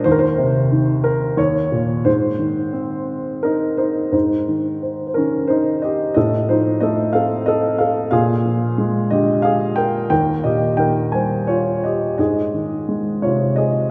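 A woody, natural upright piano sits up front and plays alone for the full 13.9 seconds of this relaxed, warm classical passage, cut from a longer piece, moving in a lyrical, rubato 3/4 at around 90 BPM in Ab major through harmonies such as F7/A and Bb7 before settling back on Ab at 12.2 seconds, all framed by a lingering concert-hall reverb.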